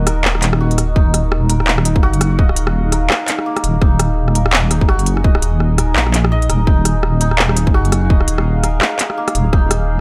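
A hard-clipped electronic kick drum sits up front in this tense, spacious half-time drum and bass excerpt at 168 BPM in Eb minor, entering at 1.0 seconds. Beneath it, a deep, dark wobble bass built from detuned sawtooth and sine tones holds low, compressed and thickened with chorus, while an industrial drum kit of crisp hi-hats, handclaps and rim clicks, tape-toned and up front, adds a swung sixteenth-note feel in a small room. A moody, mellow ambient pad sustains an Eb minor chord throughout, its slow attack, sub octave, long release, chorus and built-in reverb joined by sidechain pumping. Over this, a bright acoustic santur rings out hammered, shimmering arpeggios trailed by tape echo. The whole excerpt stays in a single section over one chord, set in a digital ambience.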